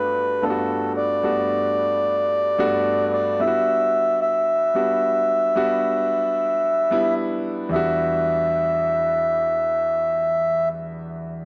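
A dry, gritty hardware recording with a light touch of studio reverb frames this short amapiano passage, cut from a longer piece. A reedy, round accordion carries the melody up front, its single-reed tone mellow and soulful, and it falls silent at 10.7 seconds. Beneath it, a polished, present grand piano plays the accompaniment across a range reaching from the bass register into the middle, sitting at a lower level than the accordion and continuing to 11.4 seconds. The harmony moves from Gmaj9 to Em9/G, then settles on Em7 as a new section begins at 7.7 seconds. A swung sixteenth-note feel in common time gives the music a hypnotic sway.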